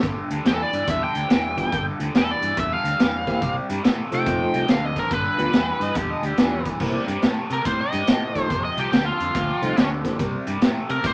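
A crunchy, dark-toned studio sound with moderate room ambience carries this swaggering, rollicking electric blues shuffle at 142 BPM in C major, where a saturated breakbeat drum kit with a punchy kick and high-tuned snare sits up front beside a round fingered electric bass and a bright, overdriven semi-hollow guitar riff treated with phaser, while a biting lead guitar enters at 0.5 s and takes a solo from 6.8 s, a clean tonewheel organ with key click and slow rotary speaker adds accompaniment, and a gritty amplified harmonica with tongue slaps and scooped notes cuts in briefly at 5.8 s.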